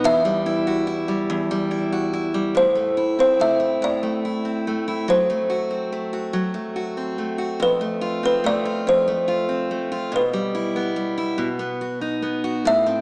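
In a slow 6/8 at 48 dotted-quarter beats per minute, this aching, dramatic pop piece in E minor sets a woody, bright kalimba melody with a thumbnail pluck over a full-bodied, up-front picked steel-string acoustic guitar, both playing throughout. The harmony opens on Emadd9 and moves through Am at 2.6 seconds, then F#dim, F and Em/B before landing on B. A moderate stage reverb gives the parts space, while the overall small-speaker sound lends the recording a compact character.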